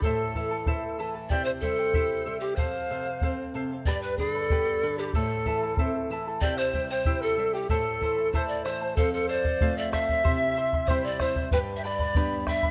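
Close, detailed microphones and a moderate stage reverb give this short Andean folk cut from a longer piece an intimate yet airy sound, wistful and festive at once. A breathy bamboo pan flute carries the melody up front, tongued with vibrato and a noticeable chiff, while a reedy end-blown wooden quena adds a second line in the background. Beneath them, a fingerpicked charango shimmers on its double strings, a small nylon-string guitar with fresh strings brings bright fingerpicked accompaniment, and a round bombo drum marks the 2/4 pulse from start to finish.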